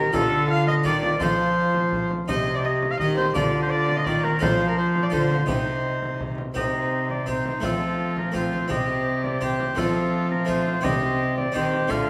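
A clear, distant oboe with light vibrato leads this rustic, courtly renaissance-style consort dance in 3/4 at 168 BPM in C dorian, joined from the outset by a nasal, gut-string violin on a second line, a full Italian-style harpsichord with two sets of strings and a warm, bowed viola in accompaniment, and a close, rich cello holding the bass, while a deep frame drum played with soft hands enters at 0.1 seconds, the ensemble set in a moderate recital-hall reverb as the harmony cycles through D minor, F and C minor.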